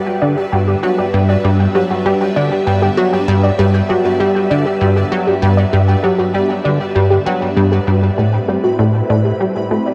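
Expansive and luminous, this 98 BPM ambient space-music excerpt in G major rides a punchy, funky analog bass riff up front, while a warbling, lo-fi dusty pluck spins chorused, delayed arpeggios from 0.1 seconds, a swirling vintage string machine holds phased chords, and a bright pulsing gated texture shimmers in the background, all bathed in a huge reverb as the harmony moves from G to Amadd9 at 8.2 seconds.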